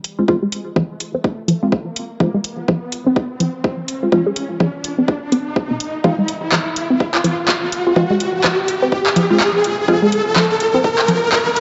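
Hypnotic and quirky, this minimal techno build-up lays a squelchy, detuned blip pluck riff with sidechain pumping and tape echo over a muted, deep dub chord stab under a filter sweep, while a punchy overdriven kick, a house kit of handclaps and bright hats, and an up-front riser push through nearly the whole 11.6 seconds, all bathed in spring reverb and the dulled haze of a home cassette recording.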